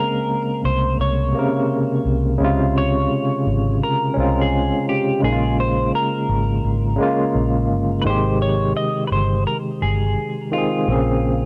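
Reflective and hazy, this lo-fi hip hop excerpt moves at 85 BPM in 4/4 with a loose swing on the sixteenths, sitting in Bb dorian. A barky tine electric piano carries the accompaniment up front, lightly overdriven and pulsing with a fast tremolo through a combo amp, its tone dulled by cassette tape and a low-pass filter. A clean, fingered electric guitar plays the melody between F4 and Eb5, softened by analog chorus, tape echo and its own low-pass filter. A vintage muted fingered electric bass enters at 0.6 seconds with a dark, round, foam-muted sound. The chords drift from Bbm9 through Dbmaj7 and Bbm7, then shift to Abmaj7 as a new section begins at 8.0 seconds before returning to Bbm9. The recording is dry and gritty, with light reverb and cassette tape character lending a worn, intimate feel.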